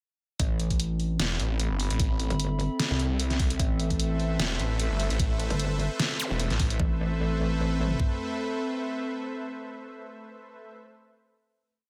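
A lightly reverberant mix opens straight into a chaotic, menacing wobble dubstep drop in a swung half-time feel, where a metallic FM wobble bass, overdriven and chorused, sits up front with modulated phrases of changing wobble speed. From 1.2 seconds a snarling, detuned sawtooth bass with a moving notch adds chopped, growling phrases that answer the other bass, while an electronic kit drives the half-time beat with a knocking, overdriven kick and toms, plus a deep, roomy snare and hi-hats. A warbly, lo-fi tape-like pad with ring modulation and built-in reverb drifts in beneath, its dark, slowly shifting chords pumping against the sidechain. A lush, airy supersaw pad joins at 3.6 seconds with bright sustained chords, and a very quiet electronic zap marks the transition just before the drop ends at 6.8 seconds. The two pads then carry a final sustained chord to the close.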